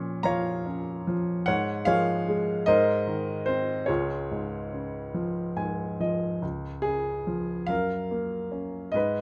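An up-front, intimate baby grand piano plays alone throughout this tender, peaceful fragment of a lyrical classical solo piece in Db major, unfolding with rubato at 48 BPM in 6/8 across a span from Db2 to Bb5, with audible action noise and a short sustain set in a moderate small-room reverb, a brief fill at 5.1 seconds leading into a new section at 6.4 seconds.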